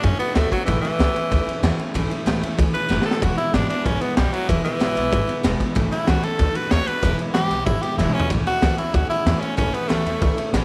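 Light studio reverb colors this rowdy, upbeat rockabilly excerpt, and the saturated drum kit sits up front in a pumping, bright stone room. At 189 BPM in a straight 4/4 feel in A major, a raspy tenor saxophone, also up front, takes a forceful, edgy solo with light vibrato and a punchy pop-style bite until 8.3 seconds. A picked steel-string dreadnought acoustic guitar supplies full-bodied accompaniment, with finger squeak audible. An upright bass plays pizzicato on gut strings, with a woody, dark, thumpy tone. The garage drum kit pairs a high-tuned snare and punchy kick with ride cymbal and toms, its gritty sound rolled off at the top, and it plays fills near 2.9 and 8.0 seconds. The harmony moves through D, A and E before the music turns to a new section on A, and the passage is cut from a longer piece.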